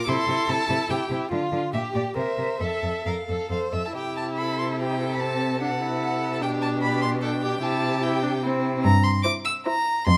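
The first violin leads this lively, graceful classical-period movement for string quartet, singing a smooth, even melody with vibrato that sits up front yet carries a distant quality, while the second violin adds a focused line beneath it. The viola and cello shade the accompaniment and bass with soft attacks, expressive portamento and vibrato, the cello's rich tone also placed up front, all in a triple metre with rubato that moves into a new section at 4.0 s. Close, detailed microphones capture the players within a moderate recital hall reverb, and the passage is cut from a longer piece.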